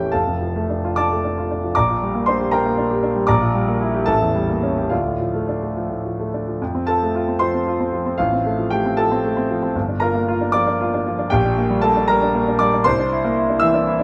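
A solo concert grand piano opens this stormy, agitated virtuoso study in a rubato 6/8, its clear tone reaching from a deep bass up into the high treble. Close and up front yet open in character, it sits in a moderate, large studio reverb. The dark, tense harmonies of the opening give way at 6.6 s to a new section in F major that moves toward a ninth chord before this cut from a longer piece ends at 14.0 s.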